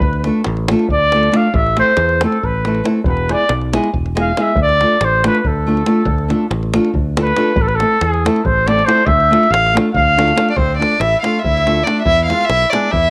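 A mellow trumpet with light vibrato carries a fiery, virtuosic solo in classical style from the start to 10.6 seconds, sounding distant and roomy yet up front, in this short cut from a longer Balkan wedding-band piece in 7/8. Beneath it, a bright, growly fingered electric bass, a small fingerpicked nylon-string guitar and a tight, close, dry davul drive the straight groove through the Dm, Am and E changes. At 10.5 seconds a single bowed violin enters, played sul tasto with a soft attack and a pure, floating, smooth top, and the whole has the character of a home cassette recording bathed in moderate spring reverb.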